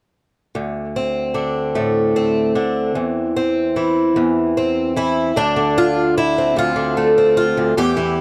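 A fingerpicked twelve-string acoustic guitar plays alone in this wistful, reflective folk fragment in a lilting 6/8, its woody, boxy tone from old strings shimmering with octave-doubled sparkle as it sits up front in a dry, close 1970s-style studio sound, moving from D5 to C/E at 3.0 seconds and settling on Dm7 at 5.4 seconds before the cut at 8.2 seconds.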